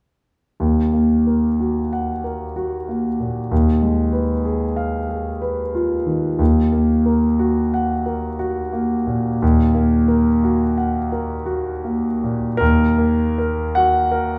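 A slow, rubato pulse in 3/4, moving at roughly 49-65 BPM, carries this romantic classical nocturne for solo piano in Eb minor, cut from a longer piece. The mood is melancholic and yearning, with a single concert grand playing throughout from 0.6 to 14.4 seconds across a range from Eb2 to Gb5. Its tone is clear and natural, with a deep bass and an up-front presence. The harmony settles on Eb minor, shifts to a half-diminished Fm7b5 over an Eb bass at 3.5 seconds, and returns to Eb minor at 6.4 seconds. After the opening section, a new passage begins at 12.6 seconds before the fragment breaks off. A moderate recital hall reverb surrounds the instrument with a gentle sense of space.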